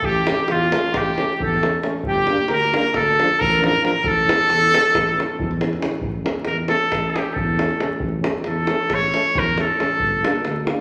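Soaked in wet large-studio reverb and dusted with vinyl crackle, this bittersweet, restless Balkan brass band fragment in 9/8 at 271 BPM in A phrygian dominant sets an up-front trumpet melody with light vibrato over a background alto saxophone second line that stops at 5.6 s, a tight davul, a dark tuba bass, a vintage-tinged euphonium and a distant, roomy French horn as accompaniment, before the trumpet takes a solo from 6.0 s.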